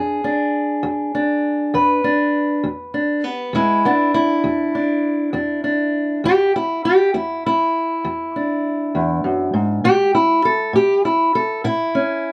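A fingerpicked steel-string parlour guitar plays alone from the start, setting a laid-back, gritty acoustic country blues in E mixolydian at a slow 67 BPM in a straight 12/8. The guitar sits up front with a woody, boxy tone and the dull bite of old strings, resting on E7 before moving to A7 at 9.8 seconds. Light reverb and a dark production frame this short excerpt, cut from a longer piece.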